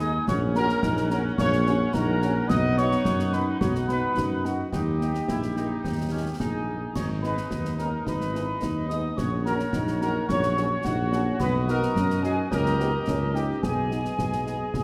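A stern, martial military-style march for wind band in G# minor at 108 BPM in 2/4, cut from a longer piece, where a tight classical trumpet section carries the melody over an up-front mellow tuba bass with light vibrato, while a clear euphonium in the background, a pure, hollow, close-miked piccolo and a distant woodwind section add second lines, a very quiet, roomy French horn section supplies accompaniment, and close, dry concert snare, bass drum and dark clash cymbals enter at 0.3 s, the band sitting in a wet scoring-stage reverb.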